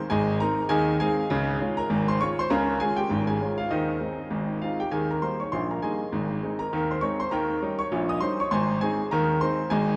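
Playful and lively, this ragtime piano piece moves at 100 BPM in 2/4, with a gentle swing on the sixteenth notes and a home key of Ab major. A clear grand piano plays alone throughout the 10-second fragment, sitting up front and spanning a broad range from Ab1 up to Eb6. The harmony travels from Ab to Db, then through Ab/Eb and Eb before returning to Ab, with an Eb7 at 7.3 seconds leading back home at 8.5 seconds. The sound is bathed in a drenched cathedral reverb with a long five-second decay, placing the instrument in a vast, echoing space. That cavernous ambience gives the playful, jaunty style an unusual, hall-like bloom, and the fragment is cut from a longer piece.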